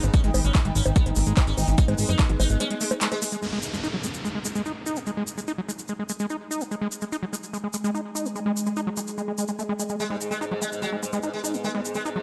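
A straight 4/4 pulse at 146 BPM drives this psychedelic trance cut in G# minor, with an alien mood: a punchy electronic kick and a plucky, funky analog bass lead the opening, the bass lasting until a break at 2.6 seconds, while a crisp big-room dance drum kit with bongos, handclaps and filtered hats and a grainy egg shaker keep moving, a squelchy, gritty overdriven acid bass riff churns up front with delay, a buzzing, shimmering sitar melody with phaser and tape echo returns at 10.0 seconds, an overtone-sweeping drone with chorus sits in the background under a filter sweep from 3.4 seconds, an electronic downlifter appears at that same point, and a very quiet resonant blip pluck flickers near the end.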